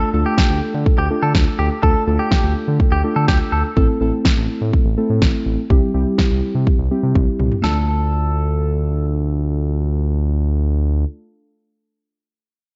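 Driving and nocturnal, this short synth-pop cut at 124 BPM in D minor sets punchy, layered house drums and a smooth, mellow sawtooth-and-triangle synth bass up front beneath muted, felt-like synth keys with chorus and a filter sweep running to 7.6 seconds, while a bright, twangy clean electric guitar with tape echo adds a second line, the drums closing on a fill at 7.2 seconds inside a dark production with light digital reverb.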